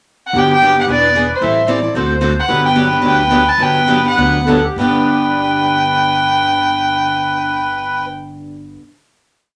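Playful and charming, this complete piece of acoustic string swing opens with a brief pickup, then a bowed violin with light vibrato carries a nasal, earthy melody built on hook phrases, while a reedy, sweet accordion with light tremolo tuning adds a counter-melody. Beneath them, a bright, boxy picked guitar with audible finger squeak plays four-to-the-bar rhythm, short and accented on two and four, as a softer second rhythm guitar sits in the background and a woody, thumpy pizzicato upright bass plays a two-beat root-and-fifth line. The band slows from 2.5 seconds and settles on a final chord at 4.8 seconds, heard in a moderate club reverb.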